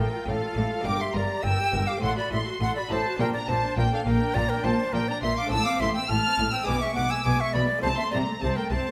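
Baroque-style classical concerto music at 103 BPM in 4/4, lively and festive, in which an airy, up-front concert flute with lifted highs carries the melody alongside a focused, close violin section, with a lush, smooth-topped second violin section on a supporting line, a rich viola section and a very quiet, muted, lute-like buff-stop harpsichord in accompaniment, and a distant cello section and an even, smooth double bass section anchoring the bass, all bowed strings singing with vibrato inside a wet recital hall reverb across this 8.9-second excerpt cut from a longer piece.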